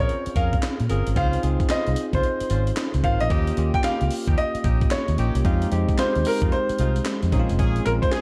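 A dark, warm production with light reverb and digital ambience frames this slick, bouncy new jack swing excerpt in F minor at 112 BPM, swung on the 16ths and moving through Bbm7, Dbmaj7, Eb7 and Fm7. A clear, polished baby grand carries the melody with delay, over a bell-like, bright tine electric piano with subtle chorus and smooth jazz-style horn stabs. Up front sit a round, punchy, foam-muted fingered bass and a gritty, compressed breakbeat kit, entering at 0.1 s, with a thumpy kick, high-tuned snare, hi-hat and handclaps.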